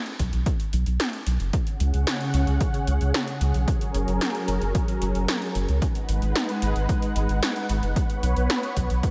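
Synthwave at 112 BPM in a straight 4/4, driving and nostalgic, cut from a longer piece and moving through B5, C#sus4, F#add9, G#m7 and Bsus2. A punchy, up-front electronic kick and 80s pad drums with a gated snare and metallic hats carry the beat under a deep, round analog bass with a wave-folded, fast-attack tone. From 1.5 s a silky, detuned string pad swells in slowly with ensemble chorus, vibrato, sidechain pumping and shimmer reverb, all set in light digital ambience.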